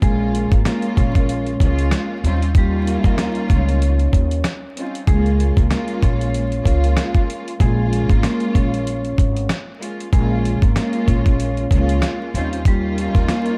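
A gritty, compressed sampler-style drum kit sits up front with a thumpy kick, fat snare, rim click and hi-hat, joined from the start by a woody, growly pizzicato upright bass, bowed strings with vibrato and a metallic, ringing vibraphone melody. The cut is tough, dark boom-bap hip-hop at 95 BPM in Bb dorian with a lightly swung sixteenth feel, where the strings carry a lush, close ensemble sound through cassette-tape filtering, and the dry, close-miked vibraphone, played with medium hard mallets and the motor off, trails a delay over chords moving from Db6 to Eb13 and Bbm7. Vinyl crackle and studio reverb give the whole fragment a dusty, shadowy production, with the bass dropping out at 13.3 seconds just before the end.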